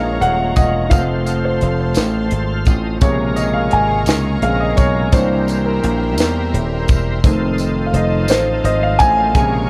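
Slow gospel in 6/8 at 57 BPM, this soulful, fervent passage is cut from a longer piece and moves through Gbmaj7, F, Bbm7, C7 and F7. A woody upright piano sits up front and carries a solo across the whole 9.7 seconds, its notes trailing a dub echo. Beneath it, a bright, shouting tonewheel organ holds sustained chords through a slow rotary speaker with light overdrive, chorus vibrato and audible key click, stepping forward for a fill from 2.0 to 3.0 seconds. A lush, bowed string section adds close ensemble vibrato in the background, while a punchy, foam-muted thumbed slap bass sits dry and direct near the front. A crisp fusion drum kit with a high-tuned snare and tight kick plays hi-hat, kick and snare from 0.2 seconds, and a jingly tambourine enters at 0.6 seconds behind the band. The mix is echo-heavy, with light reverb around the parts.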